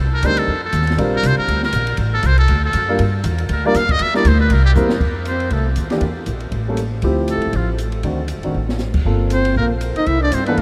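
A woody, pizzicato upright bass opens this playful small-group swing and bop cut, joined at once by a buzzy, thin muted trumpet soloing up front with scooped notes, a present grand piano with long sustain, and a dark, smooth acoustic drum kit with a boomy kick and drum fills, before a breathy, whispered trombone with vibrato adds a second line at 5.3 s, the ensemble heard in a vast, echoing space of huge ambient reverb.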